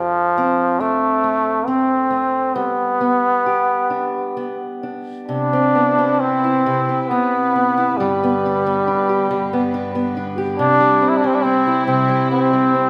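Celtic folk slow air in C major, wistful and pastoral, moving at 67 BPM in 3/4 with an unhurried, rubato feel, heard as a short cut from a longer piece. A trombone with a straight mute carries the melody up front in a nasal, classical voice with light vibrato, over a fingerpicked acoustic archtop guitar whose boxy tone and audible finger squeak sit close and present. At 5.3 seconds a studio string section enters beneath them with soft-attack, sul tasto sustained chords that float in the background, all set in the wet reverb of a recital hall.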